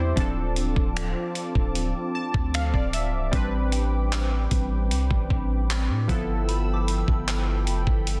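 Longing and sensual, this short excerpt from a contemporary R&B piece moves at an unhurried 76 BPM in straight 4/4, set in A minor and drifting through Dm7, Am11 and G13. A deep, mellow 808-style bass with a sine tone and long decaying notes sits up front alongside a dusty, sampler-style drum kit of finger snaps, handclaps, hi-hat and a thumpy kick, its gritty, compressed sound carrying the air of a large room and a softly clipped snare. Analog keys with a round, detuned sawtooth tone, ring modulation, a filter sweep and chorus play the accompaniment, stepping forward with a bright fill from 1.8 to 3.3 seconds. With them, a smooth, detuned sawtooth pad with chorus holds slow-attack sustained chords. At 3.7 seconds a pure, gentle FM bell enters in the background, its decaying notes dressed in chorus and tape echo. The mix is dry, dense and heavily limited in a modern way.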